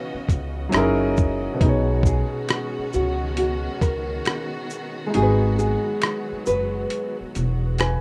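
Reflective and nostalgic, this lo-fi hip hop excerpt moves at 68 BPM with a swung 16th-note feel: a thumb-plucked nylon-string guitar carries the melody over a woody upright piano tinted by cassette tape, while a lush, bowed string section holds sustained chords with vibrato and portamento. A dark pizzicato upright bass sits up front beside a gritty, compressed sampler-style drum kit of thumpy kick, hi-hat, rim click and shaker, and a finger snap enters in the background at 0.7 s. The harmony drifts from C#m11 through F#13 and B69 to G#m7, where the kick drops out at 5.1 s, inside a small room and a rough home demo mix.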